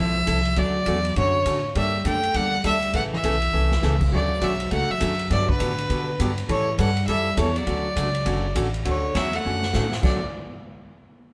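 Cheerful and down-home, this western swing excerpt bounces along at 203 BPM in D major with a swung eighth-note feel. A clear, smooth bowed fiddle with light vibrato carries the melody up front, while a clean, compressed hollow-body electric guitar plays a low second line, a boxy acoustic archtop with old strings picks the accompaniment, and a thumpy pizzicato upright bass with gut strings anchors the bottom. Airy, polished drums with dark cymbals, a punchy kick and a medium-tuned snare come in at 0.3 seconds and add fills at 3.5 and 9.4 seconds, with the band playing live together in a stone room with moderate reverb.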